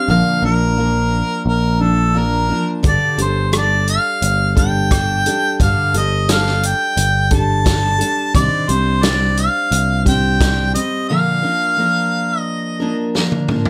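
A light reverb colors this short cut from a longer folk rock and heartland rock piece, reflective and dusty in mood. At 87 BPM in a straight 4/4 and G minor, a harmonica carries the melody as the solo voice, its pop-style tone roomy and touched with light vibrato. Beneath it, a picked jumbo steel-string acoustic guitar provides full-bodied accompaniment, while a picked electric bass adds round, up-front low end. A vintage drum kit with a natural studio-room sound, a punchy kick, medium-tuned snare and rolled-off top joins at 2.8 seconds, using hi-hat, rim click and toms. The harmony moves from Bb through Gsus2 and Cmadd9 and back to Bb, where a break begins at 11.1 seconds and closes with a drum fill at 13.1 seconds.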